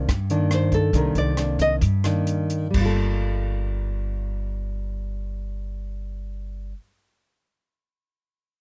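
This intimate, melancholic bossa nova fragment in G minor opens with a full-bodied, fingerpicked nylon-string guitar accompaniment, a woody, thumpy gut-string upright bass and a compact cocktail kit of dark cymbals, punchy kick, hi-hat and rim click, all slowing down as a thumb-plucked nylon-string melody guitar, with audible finger squeak, takes a brief solo over Cm9 before the harmony moves to Gm9 at 2.7 seconds and the kit drops out at 2.9 seconds, all caught by close, detailed microphones in a dry room.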